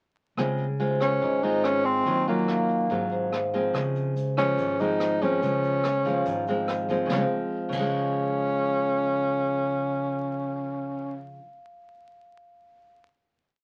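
A breezy, relaxed bossa nova piece at 143 BPM in Db major, where a breathy, subtoned tenor saxophone sings mellow song-like phrases with light vibrato and scooped notes up front over fingerpicked nylon-string guitar playing thumb bass and syncopated plucked chords, a round, dark electric bass in a root-and-fifth two-feel, a brushed drum kit with dark cymbals and a boomy kick that drops out at 7.8 s, a very quiet grainy egg shaker, and ringing, airy vibraphone notes scattered through the final chord and lingering until 13.0 s, all heard in a moderate club reverb through the crackle of a very old 78 rpm record.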